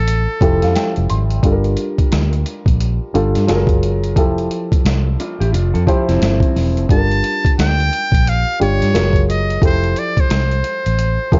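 A dark, rolled-off mix in a digital ambience carries this smooth, sultry neo-soul R&B passage at 88 BPM in 4/4 with a swung sixteenth feel. A mellow, up-front baby grand piano opens with a fill and moves through chords such as Fmaj9, Gm7 and F#maj9, over a round, punchy foam-muted electric bass and a gritty, compressed sampler-style boom bap kit with a thumpy kick, re-recorded in a large room. A buzzy, breathy metal-muted trumpet with light vibrato plays a jazz-style solo melody at the very start; a slightly broken-up, lo-fi electric guitar takes a short second line from 5.2 seconds before the trumpet returns at 6.9 seconds.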